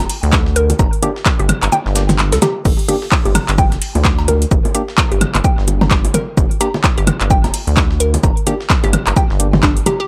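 Hypnotic and clinical, this excerpt of minimal techno in G minor runs at 129 BPM with a swung 16th feel, built on a punchy, up-front electronic kick that drops out between 1.7 and 2.7 seconds, a booming analog drum machine with metallic hats, crash and handclaps, and a gritty, compressed breakbeat sampler-style kit of snare, hi-hat and shaker sitting filtered and pumping in the background. A rubbery, wave-folded square bass bounces with tube saturation and sidechain pumping, while overdriven electronic cowbell, bongos, toms and woodblock add analog delay echoes. A detuned, chorused square pluck riff with a moving notch arrives at 0.6 seconds, joined at 1.0 seconds by dark, organ-like percussive stabs, all captured as a dry, gritty hardware recording.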